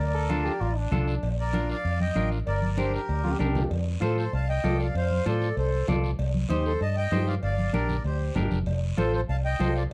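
Festive and joyful, this brisk cumbia excerpt at 194 BPM sets a reedy, up-front accordion melody with plate reverb over a round, foam-muted electric bass, a bright picked clean guitar, background congas and distant ringing cowbell and timbales, and a raspy guiro, while a brilliant, punchy trombone with light vibrato adds a second line until a drum fill at 3.2 seconds ushers in a new section, all moving from D minor through B-flat, G minor, F and C minor in a dark production.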